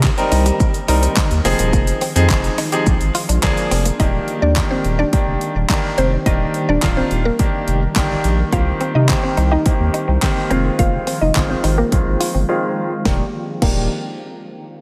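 Awash in lush hall reverb with a big arena sound, this carefree, upbeat dance-pop passage cut from a longer piece rides on a punchy, layered pop drum kit with handclaps and shaker and a deep, saturated sub bass pumping up front, while a brilliant grand piano plays accompaniment, a clean, direct-recorded electric guitar picks a riff in the background, a very quiet shimmering pad holds ethereal sustained chords, and a woody, round synth pluck carries the melody from 4.0 s under a filter sweep that ends in a brief silent gap at 12.5 s.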